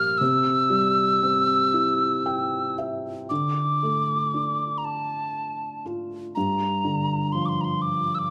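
A hollow, airy tin whistle sings a mournful Celtic slow air over a dark, felt-muted upright piano from the very first moment, unfolding in a free, rubato 6/8 full of longing. The whistle sits close and up front, its tongued notes carrying chiff and vibrato. Meanwhile, the soft, intimate piano lets its action noise be heard and adds a fill from 1.7 to 3.3 seconds before the tune moves into a new phrase. A moderate recital-hall reverb surrounds this short portion of a longer piece.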